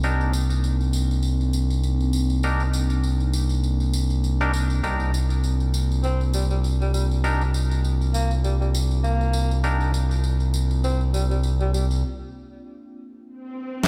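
A gritty, saturated synth bass sits up front on a low C, its nasal sawtooth bite giving this funky, playful glitch hop excerpt its drive at 100 BPM in 4/4, with a 16th-note swing and a C minor tonality tuned slightly flat of standard pitch. A bright, twangy clav punches out stabs with lo-fi 12-bit sampler grit and delay, while a jingly acoustic tambourine adds a light shimmer. Underneath, a dark, warbling, detuned pad holds a Cm9 chord in the background, softened by chorus and its own reverb and shaped by a filter sweep throughout. At 6.0 seconds a breathy, mellow tenor saxophone enters for a jazz-style solo, with light vibrato, scooped notes and a touch of delay. The bass and tambourine stop at 12.0 seconds for a break, where an electronic swell rises before a compressed, pitched-down snare hits hard and up front at 13.8 seconds, all set in a large, reverberant room ambience.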